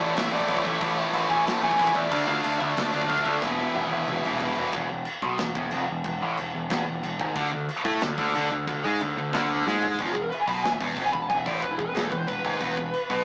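Heavy and epic, this short heavy metal cut from a longer piece charges along at 183 BPM in a straight 4/4, set in E phrygian dominant. Two bright, high-gain distorted guitars drive the riffs, one up front and the other very quiet, while an overdriven semi-hollow guitar, double-tracked and hollow in tone, sits in the background until 10.0 seconds. A growling picked electric bass, overdriven and up front, anchors the low end, and a modern studio drum kit enters at 0.2 seconds with a punchy kick, medium-tuned snare, toms, crash and china cymbals, its top rolled off, with fills around 3.4 and 9.7 seconds. A dark, bluesy overdriven lead guitar carries the melody at the start and returns for a solo from 10.0 seconds to the close. The harmony moves from Am and Dm to E chords, and the whole has a rough rehearsal-room character with tube saturation, a small speaker sound and a moderate stone-room reverb.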